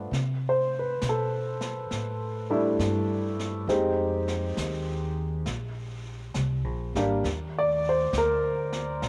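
A home cassette recording with light studio reverb frames this intimate, late-night jazz ballad excerpt at a slow 67 BPM with a gentle swing, where a clear, woody upright piano with vintage tape color and long sustain sits up front over C6, Fm7 and Bb7 chords, alongside a thumpy, gut-strung pizzicato upright bass and a soft, natural brushed drum kit of snare and hi-hat from 0.1 seconds.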